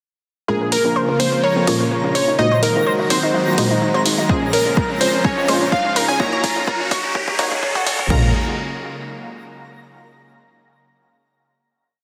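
Driving and expansive, this short progressive house piece is one continuous build that resolves onto a final held chord at 8.1 seconds. A punchy, catchy unison lead carries the motif-based melody with sidechain pumping and dub echo, shadowed in unison by a very quiet, pure FM bell, while a lush supersaw pad holds the chords. A round, chorused analog pluck repeats its sixteenth-note riff over a pedal note and a wave-folded unison pluck adds syncopated stabs, both under filter sweeps, above a thick, saturated analog bass in a dotted rhythm. Tape-warm electronic hi-hats tick in from 0.7 seconds, a twinkling granular shimmer holds a high note, a background riser enters at 3.8 seconds, and an overdriven deep house kit with four-on-the-floor kick, toms and crash drives a drum fill from 4.3 seconds, all set in a lush hall reverb under a dense, heavily limited master.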